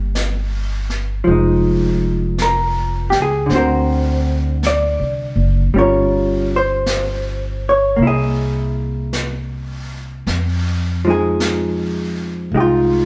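Jazz ballad with a wistful, smoky mood and a swung feel, this excerpt has a dark, clean hollow-body electric guitar up front comping picked, compressed chords through moody harmony such as Fm7, Gm7b5 and an altered C7. A woody, growly upright bass sits close beside it, while a distant, roomy brushed drum kit of snare and hi-hat enters at 0.2 s. The band plays live together in a moderate stone room whose reverb lends the whole a lingering glow, moving into a new section at 10.3 s.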